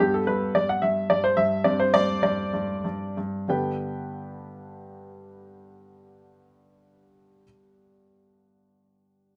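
A classical-period piano sonatina in G major, this short excerpt from a longer piece has a cheerful, graceful mood. It moves in 3/4 at roughly 90 to 110 BPM with a rubato feel, easing into a slowdown over the opening 3.5 seconds. A clear baby grand piano plays solo throughout, ranging from G2 to G5 with a natural, up-front tone and short sustain. The harmony rests on G, moves to Gsus4 at 1.6 seconds, and returns to G as a new section begins at 3.5 seconds. A moderate studio reverb gives the instrument a modest sense of space, and the tuning sits slightly below standard at A4 = 439 Hz.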